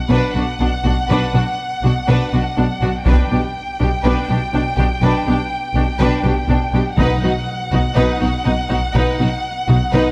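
Lush, lightly reverberant strings open this heroic, dark cinematic orchestral build-up in B minor at 122 BPM, where a distant, soft-attack violin melody rides a focused second violin line, clear viola accompaniment and an expressive cello and up-front, smooth double bass holding B, while a distant taiko ensemble struck with hard sticks enters at 3.1 seconds and a close, dry timpani sounds at 7.0 seconds as the harmony turns from B minor to B major.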